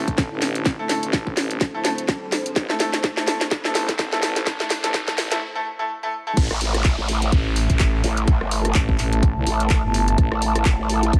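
Swung sixteenths drive this aggressive, gritty bass house excerpt, where a tight electronic kick and a garage kit with cracking snare, handclaps, hi-hat, rim click and crash sit up front over a thick FM bass, a moody detuned analog pad under a filter sweep, bright grand piano stabs and a very quiet, warbling lo-fi tape-like pad through the build-up, with a riser and downlifter in the background, until a break at 5.4 s leads into the drop at 6.4 s, where a saturated, wobbling growl bass joins the low end.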